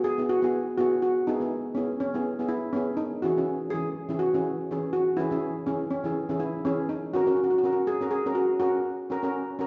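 Set in a wet recital hall with a 1.6-second reverb tail and a soft top end, this short festive calypso fragment moves at 123 BPM in a straight 4/4. A double-seconds steel pan carries the bouncy melody between C#4 and G#4, while a cello-pan part fills in the harmony from E3 to A#4. Both pans are played with medium rubber sticks and sound metallic and shimmering, up front and boxy, over chords that pass from Eadd9 to C#m/E and then F#.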